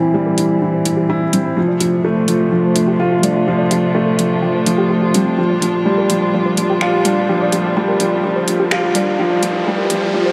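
Over a straight 4/4 pulse at 126 BPM, this intimate, melancholic piano and strings electronica excerpt in G dorian builds from its opening as a dark, mellow baby grand riff sits up front with delay, a muted string quartet holds veiled, con sordino chords under a filter sweep, a soft round pluck traces chorus-lush, 12-bit-gritty arpeggios in the background, a deep house kit of finger snaps and metallic hats ticks in from 0.4 seconds with small room ambience, and a riser enters at 7.9 seconds, all bathed in a huge ambient reverb over chords moving from C7 to Dm7 to Gm7/D.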